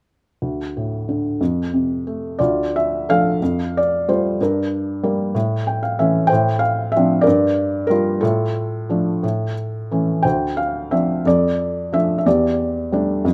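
A felt-muted upright piano, soft, mellow and intimate with audible action noise and short sustain, sits up front in moderate studio reverb for this dark, reflective classical excerpt in 6/8 with rubato, playing alone from 0.4 to 13.3 seconds over chords moving from Dm through Gm and A to a closing A7sus4/E, with a brief fill at 5.3 seconds.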